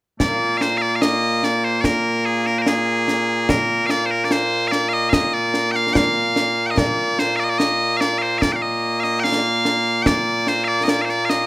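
A steady 2/4 pulse at 73 BPM, played straight on concert snare and bass drum with dark cymbals and a small-room acoustic sound, carries this ceremonial, stirring fragment of Scottish traditional pipe music in Bb mixolydian. Loud, piercing bagpipes sit up front as a continuous solo melody from 0.2 to 11.5 seconds, ranging from Bb2 to G5 and bathed in plate reverb. The whole has the rough, moderately reverberant feel of a home demo, cut from a longer piece.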